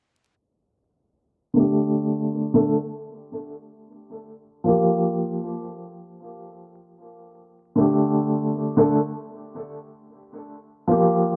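Trip hop at 77 BPM with a light sixteenth-note swing, hypnotic and melancholic, in which a woody, open upright piano sits up front from 1.5 seconds, alternating between Dsus4 and Gm7 chords through tremolo and tape echo, while a filter sweep runs across the excerpt under a dark, low-pass-filtered production with vinyl crackle, moderate spring reverb and small room ambience.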